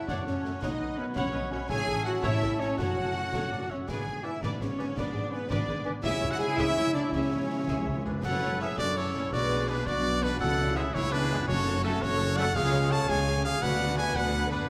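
This heroic adventure film score in a straight 6/8 has a swashbuckling spirit, cut from a longer piece. A very quiet, focused violin section carries the melody, while a smooth second violin section, a warm solo oboe, a mellow clarinet and an airy flute ensemble weave supporting lines in the background, with the flutes dropping out at 8.0 seconds. Dark French horns and very quiet trombones hold sustained chords, a soft-attack viola section fills in the accompaniment, and a ringing, fingerpicked concert harp adds arpeggios. A rich double bass section and a close cello section anchor the bass, and a clear solo trumpet sits up front with stabs. Snare drum, bass drum and bright clash cymbals drive the background from a live room, and hard-mallet timpani punctuate the music with a fill from 6.0 to 8.2 seconds, all bathed in a wet scoring-stage reverb.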